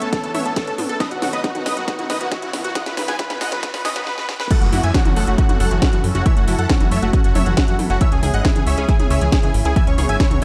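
This uplifting trance excerpt opens mid-build, with a house drum kit rolling through fills of toms, cracking snare, metallic hats and crash while a filter sweeps over the analog pluck's round arpeggios and a very quiet riser and downlifter drift beneath. A huge, thick supersaw carries the driving, emotional melody from the start, its tape-coloured sound trailing tape echo, while a catchy, bright unison lead with vibrato traces a second line high above it. A lush pad holds sustained chords in the background through chorus and phaser, and a funky, plucky analog bass anchors the low end. At 4.5 seconds the drop arrives, the harmony settling from the lifting Aadd9 and Badd9 of the build into F#m7 and then C#m. A punchy, up-front electronic kick drives the whole track, and sidechain pumping makes the synths and bass breathe around it within a dark, lightly reverberant production.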